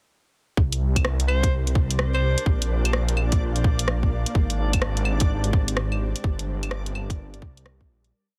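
A wistful, nocturnal future garage piece opens at 0.6 s with a tight, muffled two-step kick, overdriven and up front, joined by a menacing detuned sawtooth bass that holds long gliding notes under a saturated filter swell, pumping against the kick. A skittering, shuffled garage kit of closed hi-hat, claves and rim click adds its own overdriven grit, the swung sixteenths giving the groove a loose, rolling feel. Behind them sits an ethereal, airy pad of sustained chords, mellow and set in the background, shimmering with ensemble chorus, tremolo, reverb and a grainy 12-bit sampler character while it pumps in time. A bright alto saxophone lifts briefly through the mix with short pop-style phrases, scooped notes and light vibrato, trailed by tape echo, while a reversed, granular texture drifts in from 1.9 s as a dreamy held high note. The harmony moves through C5, Bb, Abmaj7 and Gm, and the dense, heavily limited, fairly dry mix fades out over its final seconds.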